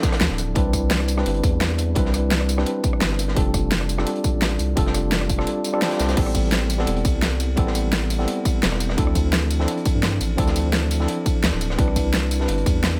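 A straight 4/4 groove at 171 BPM drives this melancholic, lush liquid drum and bass excerpt in A minor, built from a punchy layered electronic kick, a pop drum kit with a fat snare, bright hats, crash, ride, rim click and tambourine sitting up front, and a dark, gritty breakbeat kit with a rolled-off top adding saturated small-room texture underneath. A deep, thick sine sub bass with a fast attack holds sustained notes from 0.2 seconds, while a worn, slightly out-of-tune tine electric piano, lightly overdriven and coloured by tape echo, carries chords such as Dm9, Cmaj9, F69 and Am9. The kick briefly drops out from 5.5 to 6.2 seconds before the section repeats, and the mix stays dry overall.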